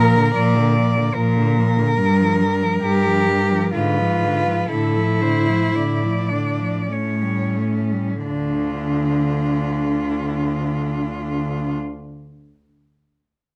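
Four bowed cellos begin together in an elegiac, yearning classical passage in 3/4 with a rubato feel: a rich, expressive melody sings high with vibrato and portamento over a warm, focused, up-front second line and a soft-attacked accompaniment, while the up-front bass anchors the harmony, the music slowing from 0.7 s until it settles on a D minor chord at 8.2 s, captured closely and in fine detail with light reverb in this fragment cut from a longer piece.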